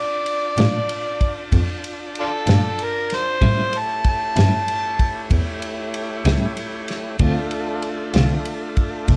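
Brooding and soulful, this slow blues excerpt moves in 12/8 at 63 BPM over Bbmaj7, A7 and Dm7 chords. A gritty, amplified harmonica leads in a jazz style with scooped notes, tongue slaps and light vibrato until 5.3 seconds, while a thick tonewheel organ holds lightly overdriven chords through a slow rotary speaker. A clean, compressed electric guitar picks accompaniment with tremolo, a close, bowed double bass adds a soft-attacked, airy low line, and a dry, up-front acoustic drum kit with dark cymbals and a tight kick sits in a dark production with light reverb and a faint mains hum.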